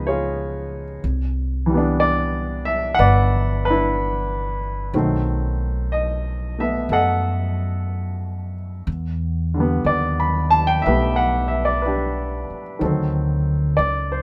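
A jazz ballad with an intimate, late-night mood and a gentle swing, cut from a longer piece and tuned a little flat of standard pitch. A clear, polished baby grand piano with short sustain plays accompanying chords up front throughout, moving through extended and altered harmonies such as Cmaj9, B7b9, Em7 and D7b9. Beside it, an upright bass played pizzicato on steel strings gives a woody, close-up low end, and the whole recording sits in a dry, intimate space with little reverb.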